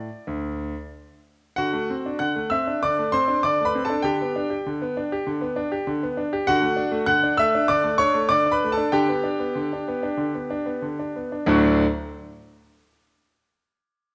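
Elegant and playful, this passage from a longer classical-period piano sonatina in D major moves at 97 BPM in 4/4 with uneven, rubato timing, its solo concert grand, tuned to A4 = 443 Hz, sounding brilliant and up front with deep bass across a range of D2 to F#6 as it moves through D7, G/D and D chords until 11.8 seconds, set in a moderate recital hall reverb.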